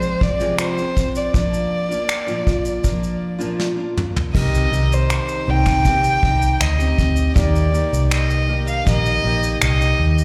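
A close, airy-bowed violin with vibrato and a soft attack carries the tender, reflective melody of this 80 BPM acoustic pop piece in C minor, sharing a slapback echo with the picked steel-string acoustic guitar, while a polished brush drum kit with finger snaps and shaker plays a fill from 3.6 seconds, a dark, round, foam-muted electric bass enters at 4.3 seconds, and the whole band is heard as a live club gig through the venue's PA.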